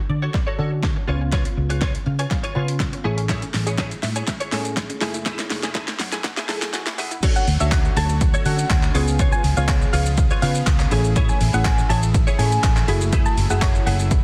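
Dance-pop in F# minor at 122 BPM, driving and bittersweet, with a punchy, up-front deep house kit of kick, fat snare, metallic hi-hats, shaker, handclaps and crash, a dark, foam-muted electric bass pumping under the sidechain, a clean, compressed direct guitar riff with ensemble chorus, and mellow, chorused analog keys cycling through Dmaj7, C#7, Amaj7 and F#m9. The opening is a build-up with a drum fill and filter sweep, where a detuned unison pluck plays arpeggios in the background through dub echo until the drop at 7.2 seconds, just after a short keys fill. The drop brings in a lush, airy supersaw pad of sustained chords and, from 7.4 seconds, a gentle, wave-folded round pluck melody with chorus and dub echo, all in a dense, heavily limited modern master.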